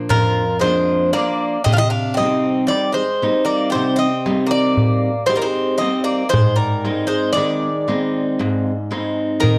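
Greek folk in 9/8 at 116 BPM (eighths), melancholic and reflective, this cut from a longer piece moves from Bb to Cm at 1.7 seconds and to Ab at 6.3 seconds. An up-front bouzouki carries the melody with a warm, metallic ring from its double and octave-doubled strings, while a second, brighter bouzouki plays a lower line beneath it, and a picked steel-string acoustic guitar with an up-front auditorium body fills in the accompaniment. A crisp metal-shell darbuka sits distant in a large room, entering at 0.1 seconds, all within a dry, close 1970s-style studio sound with small room ambience.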